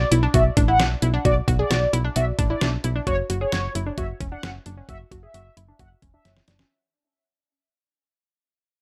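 A dark, brassy synth brass line with chorus and tape echo carries the second line over a bright, detuned analog pluck playing filter-swept arpeggios, a punchy, round FM bass and an up-front detuned 8-bit drum machine with a thumpy kick, in this melancholic, cool synth-pop fragment at 132 BPM that moves from Bm to F#5 through a fade-out in a gritty digital ambience, closing on a drum fill at 6.3 seconds.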